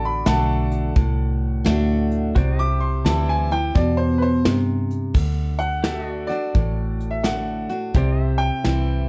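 This honky-tonk and classic country excerpt moves at an easygoing 86 BPM in 4/4 with a swung eighth-note feel, carrying a nostalgic mood in D mixolydian as the harmony shifts between D and C. A bright, woody upright piano carries the melody and takes a solo through the first 5.1 seconds, its tone brilliant and open. Beneath it, a full-bodied dreadnought steel-string acoustic guitar, picked and up front, supplies the accompaniment, while a round, punchy, foam-muted vintage electric bass anchors the low end. A clean, twangy pedal steel sits further back, playing compressed sustained chords with fingerpicks and slide, shaped by volume swells. A small-room kit played with soft brushes, with a tight kick, medium-tuned snare, hi-hat and crash, enters at 0.3 seconds, and the production is dark with light reverb.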